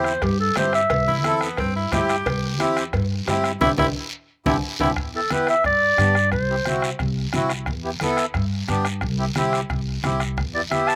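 A classical-style clarinet sings the opening melody up front over a reedy accordion with slapback echo, a woody pizzicato upright bass and a soft-beatered bombo, while raspy guiro, bright low-tuned congas in the background and ringing cowbell and timbales with slapback echo join to set a sunny, danceable cumbia groove. A gritty, punchy tenor saxophone with vibrato takes a second line until 4.9 seconds, as the band plays an accent topped by an accordion fill and a drum fill. The clarinet returns at 5.2 seconds as the music moves into a new section, and this cut from a longer piece has an outdoor sound with little reverb.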